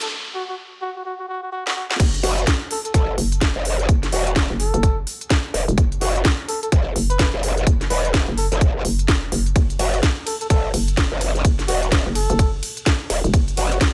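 A swung 4/4 groove at 127 BPM, with 61% swing on the sixteenths, drives this gritty, bouncy bass house excerpt in F# minor, resting on an F#m chord. From the start, a garage kit with a cracking snare, crisp hats, ride and crash sits up front beside a hollow, knocking FM bass with a fast, decaying attack, a high-pass filter and sidechain pumping. Beneath them, a deep, moody pad of detuned sawtooth and sine layers warbles very quietly, with slow attack, long release, chorus and built-in reverb. A bucket-muted trumpet carries the melody in jazz style, veiled and forceful with a smooth top, and tape echo trails its line. After a short break and build-up capped by a drum fill, the drop lands at 2.0 seconds, when a tight electronic kick enters. A growling, wobbling bass joins at 2.2 seconds, saturated, compressed and bright, shaped by a formant filter, chorus and sidechain pumping, while both drum parts sound layered, tape-tinged and re-recorded in a large room within a digital ambience.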